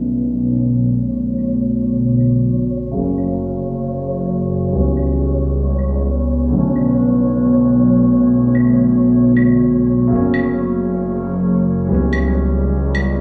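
A warbling, tape-like pad sits up front in this melancholic, ghostly future garage excerpt, holding slow-attack chords with chorus and a nostalgic lo-fi haze while a filter sweep runs across it. Beneath it, an evolving, detuned sawtooth bass in unison carries tube saturation and a menacing filter swell. A dark, woody upright piano plays mellow accompaniment through a low-pass filter and tape echo, and its tone is also swept by a filter throughout. A faint, flickering granular texture enters at 0.5 seconds, and electronic claves, re-recorded in a small room, join at 1.4 seconds over a 134 BPM groove in 4/4 with a 16th-note swing. The harmony in B minor, tuned slightly low, moves from Bm7 to F# to C#m7b5 twice. The whole mix is bathed in concert hall reverb and played back through a big system in a bare room, giving it a dim, cavernous cast.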